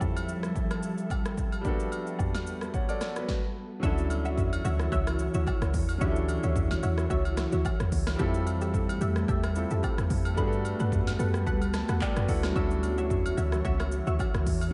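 Soulful and warm, this amapiano excerpt moves at 110 BPM in D major with a swung 16th feel. A clear concert grand piano and a glassy, ethereal FM pad with chorus and pumping sidechain open over a punchy, up-front deep house kit and close, dry woodblock and agogo bells, all cycling through lush ninth chords. After a brief stop, the drop at 3.8 seconds brings in a deep, round log drum bass and detuned sawtooth chord stabs dressed in phaser and diffuse delay, with a piano fill at 11.5 seconds, the whole dreamy mix bathed in hall reverb.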